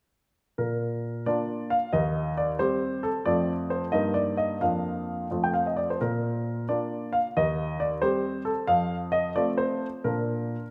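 Cheerful and playful, this short excerpt cut from a classical-period piano sonatina in Bb major moves at 89 BPM in 6/8 with rubato, a warm, present baby grand piano playing solo from 0.6 to 10.7 seconds and spanning Eb2 to G5, up front in a wet recital hall reverb as its chords move from Bb through Cm/Eb and F before settling back on Bb.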